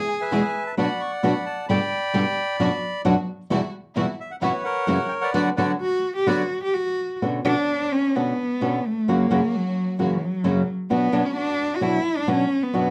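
Melancholic and dramatic, this tango excerpt moves at 131 BPM in 4/4 with a rubato feel, set in B minor and tuned slightly low to A4 = 438 Hz. A reedy bandoneon carries the melody up front from 0.1 to 6.4 seconds, its tone colored by a boxy small-room character. Underneath, a dark, fingerpicked flamenco guitar provides accompaniment from 0.3 seconds onward, with audible finger squeak, while a lush, focused studio string section plays bowed stabs with vibrato in the background. A single bowed cello, played up front with vibrato, soft attack and expressive portamento, adds a brief second line at the start, returns at 5.8 seconds, and takes over as soloist from 7.2 seconds as the harmony shifts toward Bmadd9, F# and back to Bm, following a band accent from 5.3 seconds. Close, detailed microphones and a moderate club reverb give the parts an intimate presence, and the passage is cut from a longer piece.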